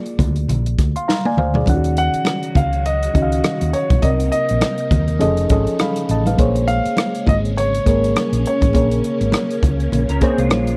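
This is lush 1970s-style soul, a smooth, bittersweet excerpt in Bb minor at 102 BPM in 4/4, with a 16th-note swing that gives it a gentle lilt. A reedy, worn electric piano heard through its built-in speakers sits up front with the accompaniment, joined almost at once by a dry compact cocktail kit with a high-tuned snare and punchy kick. A dark, round hollow-body bass and bright, damped congas tucked in the background fill out the groove. After a drum fill at 1.1 seconds, a swirling, warbling string machine with chorus and phaser slips in behind, and at 2.0 seconds a clear, intimate grand piano carries the melody, its action noise audible. The chords move from Bb7 through Ebm9, Cm7 and an altered F7 before settling on Bbm9, and a bright, twangy guitar through a slightly broken-up small amp adds a chorused riff at 10.1 seconds, all captured in a close, dry 1970s-style studio sound.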